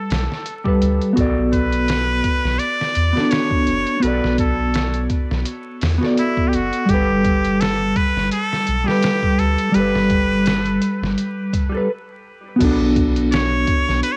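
Melancholic and brooding, this trip hop excerpt moves at 84 BPM in B minor with a lightly swung sixteenth-note feel, drifting between Gadd9 and Bm7 chords. A muted trumpet carries the melody up front, its nasal, brilliant tone shaded by vibrato and a smooth top, phrased in a jazz style and trailed by dub echo. Beside it, a dark, clean electric guitar played with the fingers supplies the accompaniment, pulsing through harmonic tremolo and colored by cassette tape. Underneath, a soft, round dub sub bass holds deep sustained notes, while a compressed, pitched-down sampler-style kit with a thumpy kick, medium-tuned snare, hi-hat and crash sounds muffled and tape-warm. The sound is dry and homespun, with vinyl crackle over the cassette recording, and a stop from 11.9 to 12.6 seconds sets up a brief new section that returns to Bm7 before the cut.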